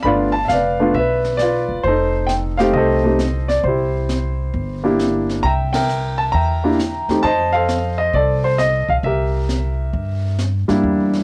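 Recorded at home on cassette in a snug booth, this relaxed jazz piano trio excerpt swings at 133 BPM in C mixolydian over a G7, F7 and C7 progression. A natural, up-front grand piano with a cassette-tape color carries the melody, while a woody, thumpy pizzicato upright bass sits close underneath. A brushed kit with dark cymbals, a high-tuned snare and a boomy kick keeps time further back, and the band lands a shared accent at 5.7 seconds as the short phrase repeats.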